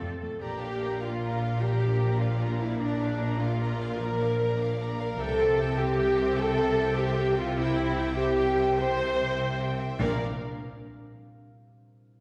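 A mellow French horn section holds tight, classically styled sustained chords from the very start of this excerpt, cut from a longer heroic adventure film score in Bb lydian. The music moves at 100 BPM in 12/8 with an adventurous, soaring mood. Alongside the horns, a clear, focused viola section bowed with vibrato supplies lush accompaniment, while a smooth, even cello section and a distant double bass section with light vibrato anchor the bass. At 0.4 seconds the violins enter in the background: one section carries an expressive melody, and a second section with a smooth top plays a supporting line, as a very quiet concert harp rings out fingerpicked arpeggios. The harmony moves from Bb to C at 5.2 seconds, and a wet concert hall reverb places the ensemble further back in the room.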